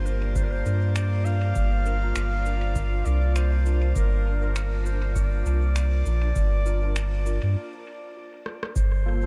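A distant, roomy clarinet opens this spacious, meditative ambient dub fragment, its clear solo line in a classical style trailing dub echo above an airy, breathy pad that holds bright, chorused chords over Bb/G. Beneath them sits a soft, round sub bass, up front and thickened by tube saturation, while a very quiet texture of glassy, drifting overtones hovers in the middle register. Almost at once a clean tine electric piano adds echoing stabs through a combo amp in the background. An electronic shaker, finger snaps and rim click, tape-warm and recorded in a small room, are soon joined by a deep analog kick at an unhurried 100 BPM in 4/4 with a light sixteenth-note swing. At 7.6 seconds the glass texture drops out as the music opens into a break, a drum fill arrives at 8.5 seconds, and the harmony settles onto Gm9 at 8.8 seconds under a light reverb.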